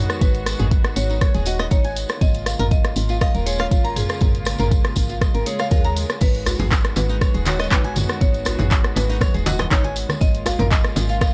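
A dark, hard-mallet marimba melody trailing dub echo opens this spiritual, earthy afro house excerpt, set over bowed strings with a reedy gut-string tone and 12-bit sampler grit and a round, woody FM bass with tube saturation, both pumping to the sidechain. A layered, up-front electronic kick, a deep house kit of claps, hi-hat, rim click, toms and crash, and a jingly vintage tambourine arrive almost at once, and a bright, fingerpicked flamenco guitar adds echoed, pumping arpeggios from 0.6 seconds. After a faint electronic swell, ringing congas and a soft-handed djembe with metal rattles join at 6.2 and 6.5 seconds, in a close, nearly dry sound.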